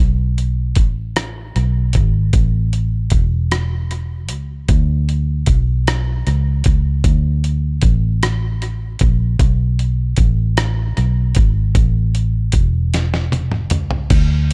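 Yearning and sultry, this slow six-eight R&B groove at 51 BPM pairs a dark, round, foam-muted fingered electric bass, sitting up front from the start, with a gritty, compressed sampler-style soul drum kit that enters at 0.4 seconds with a thumpy kick, medium-tuned snare, rim click, hi-hat, toms and crash cymbal treated with tape echo, all set in an echo-heavy digital ambience and capped by a drum fill from 12.9 seconds in this fragment cut from a longer piece.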